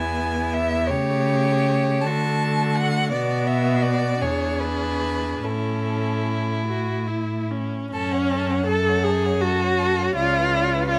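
Swaying in a rubato 6/8 at roughly 46-59 BPM counted in dotted quarters, this slow romantic movement for string quartet unfolds with a lyrical, serene mood, cut from a longer piece. The first violin carries the melody with a rich, expressive tone, singing through vibrato and portamento with a soft attack, while the second violin traces a clear, smooth second line with only light vibrato. Close and up front, the viola fills in the accompaniment with a similarly rich, expressive voice, gliding with portamento, and the cello anchors the bass with an even, clear sound. All four players bow together throughout, and the harmony moves from A major toward F# minor at 7.9 s before reaching a C#7b9 at 10.2 s. Close, detailed microphones and a light reverb give the ensemble an intimate, finely etched presence.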